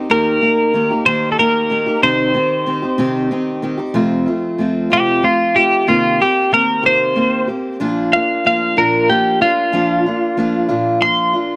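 Rock in a dusty, wistful mood, this excerpt moves at 62 BPM in a straight 6/8 in C dorian, tuned slightly below standard pitch. An up-front picked steel-string acoustic guitar lays down a warm accompaniment with audible finger squeak, while an up-front twelve-string electric guitar carries the melody in a bright, twangy, compressed tone, turning to a clean solo from 4.0 s. An echo chamber reverb gives the whole a roomy glow over a progression moving from Eb and Cm to F, Cm7 and Bb.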